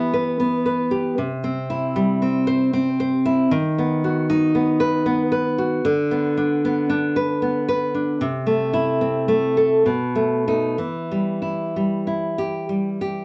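This romantic classical guitar piece for solo nylon-string guitar is passionate and intimate, moving in a rubato 3/4 at roughly 62-78 BPM in E minor. The guitar is fingerpicked across a range from B2 to C5, with a bright tone from fresh strings and an audible finger squeak that adds a close, human touch. It sits up front, yet the listener seems placed further back in a small room whose wet ambience gives the notes a short 0.5-second tail. The harmony travels from Em through C, B/D#, Bm/D and Am/C to a B7 at 9.9 s, then settles back on Em at 10.8 s. The clip is cut from a longer piece and runs for 13.2 seconds.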